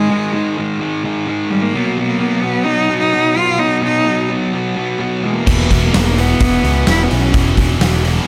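A dry sound frames this bittersweet, cathartic quiet-loud alternative rock passage at 128 BPM in straight 4/4, cut from a longer piece. A rich, biting bowed cello sings the vibrato-laden melody through analog delay over a thick, up-front fuzz guitar riff. At 5.5 seconds the full band crashes in: an overdriven fuzz bass, a punchy acoustic kit in a bright stone room, a high-gain guitar riffing in the background and a tight, double-tracked guitar sitting very quiet beneath it all.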